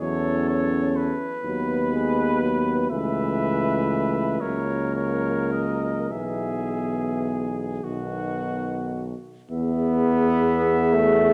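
A close-miked, warm cornet sings the melody in this serene, tender hymn-like classical piece for brass band, a brief passage cut from a longer work in E major, moving at a rubato 34-43 BPM in 6/8. A clear flugelhorn with light vibrato carries a second line above a dark, smooth-topped euphonium and a distant, roomy trombone in the background, while a vintage-toned tuba sits up front on the bass. The harmony drifts through gentle cadential chords in a reverberant recital hall before settling on E at 9.5 seconds.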